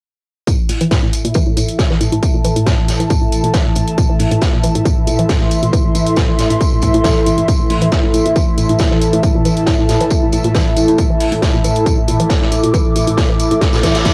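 A heavy, tape-warm electronic kick drives this relentless, industrial peak-time techno excerpt at 137 BPM in A minor, with a breathy, airy pad up front, an overdriven electronic hi-hat, a small-room street-band kit of medium-tuned snare, hi-hat and tambourine, a woody wave-folded pluck riff, a filter sweep on a synth arpeggio, and a deep, dark droning pad entering at 1.2 s, all on a cassette home recording before a reverse cymbal rises at 13.8 s.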